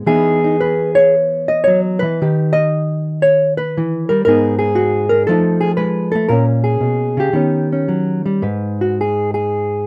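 A dark, clean, fingered hollow-body electric jazz guitar plays up front and entirely alone in this cool, late-night solo jazz excerpt at 114 BPM in G# minor, swinging its eighths in 4/4 with a rubato feel over harmonies such as Emaj7, F7#9 and D#7alt before settling on G#m at 8.4 seconds, all in light reverb.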